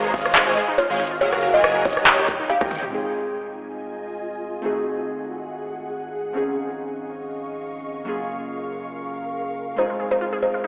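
Heard through a lush hall reverb and a thin, telephone-like filter, this emotional future bass passage in F phrygian moves at 140 BPM with a half-time, lightly swung feel. It opens on a drop: huge, detuned supersaw chords with 12-bit grit, an up-front dubstep kit with metallic hats, a punchy electronic kick, a woody kalimba melody, a bright unison pluck and a very quiet dreamy lead sit over a deep saturated sub bass, with sidechain pumping and dub echo on the supersaws, kalimba and pluck, and a drum fill arrives at 2.6 seconds. From 2.9 seconds glassy digital keys carry the accompaniment over chords moving through Fm7, Ab7b9, Dbmaj9/Ab and Gbmaj7, and an ethereal pad joins at 3.5 seconds, while the kalimba and pluck return briefly over Fm7 near the end.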